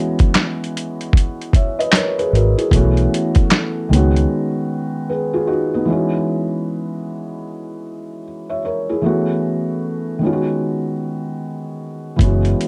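This lo-fi hip hop piece, cut from a longer track, drifts along at 76 BPM in 4/4 with a lazy sixteenth-note swing and a mellow, dreamy mood. A felt-muted upright piano carries the accompaniment throughout, its thick felt, dark tone and audible action noise given an intimate, cassette-tinged softness by a low-pass filter. A sampler-style drum kit of kick, snare, hi-hat and handclaps sits up front, pitched down, compressed and overdriven, with a thumpy kick and a muffled, medium-tuned snare. A round, foam-muted fingered electric bass joins at 2.3 seconds, punchy and amped, before the bass drops out at 4.2 seconds and the drums at 4.3 seconds, leaving the piano alone through the break and most of the following section. The harmony circles through suspended ninth chords on F#, B and C#, and the rhythm parts return only briefly near 12.2 seconds, while a light reverb and a cassette sheen colour the whole mix.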